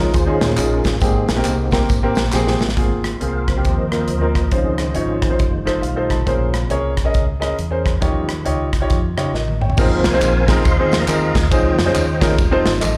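An uptempo gospel groove in Ab major opens at 137 BPM with a swung 4/4 feel, as a clear, woody upright piano with slapback echo, a tonewheel organ holding sustained chords, and a deep, round dub-style fingered electric bass start together, the modern studio drum kit joining almost at once with bright cymbals, a medium-tuned snare and a punchy kick up front. Tambourine, egg shaker and group handclaps sit in the background with their own slapback echo, heard at the start until 2.7 seconds and again from 9.8 seconds to the close. After a drum fill, the organ takes a solo from 2.8 seconds through to the end, its tone clean with audible key click, chorus vibrato and a slow rotary speaker, while the harmony moves through rich extended chords such as Dbmaj9, F7, Bbm9 and Eb9. The piano, short in sustain, steps forward with a brief fill in the middle of the solo, and a second drum fill leads back into the opening material. 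The whole excerpt, cut from a longer piece, has the jubilant, hopeful energy of a live club gig heard through the venue's PA, with light reverb and small room ambience.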